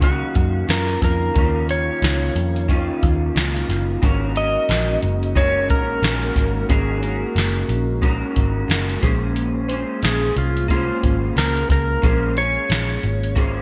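A soft vintage rhythm box sets a relaxed 90 BPM groove in 4/4 with a 60% swing on the sixteenths, its deep kick, crisp snare and metallic hats sitting up front under gated reverb and carrying a tape-softened, roomy character. This dreamy, sunny indie and bedroom pop excerpt drifts through Ebm9, Ab9sus4 and Bbm9 chords, anchored by a dark, round, foam-muted picked electric bass that also sits close to the listener. An electric guitar played through a small old amp adds compressed, slightly broken-up, lo-fi accompaniment, treated with analog chorus and a vibrato effect. Over this, a clean lap steel guitar carries the melody with slide and volume swells, its dark tone lightly touched by subtle chorus and delay until it ends at 13.3 seconds. Behind everything else, a warbling, nostalgic pad of detuned sawtooth and triangle tones holds mellow, slow-blooming chords through its own chorus and reverb, all framed by light reverb and a bright, 1980s-style digital production.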